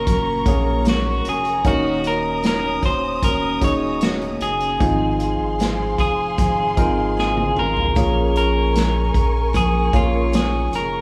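Set in a small studio room, this heartfelt pop ballad excerpt moves at 76 BPM in a straight 4/4 over Gb, Ebm7, Ab6 and Bbm7. An up-front, compressed electric guitar just at the edge of break-up carries the melody, while a polished baby grand piano, a bright dreadnought acoustic guitar picking delayed arpeggios, and a round sine-like sub bass fill the accompaniment beneath lush, dark bowed strings with expressive vibrato. A distant, roomy acoustic kit played with bundle sticks, with a punchy kick and medium-tuned snare, enters at 0.1 seconds and works in a drum fill at 7.2 seconds.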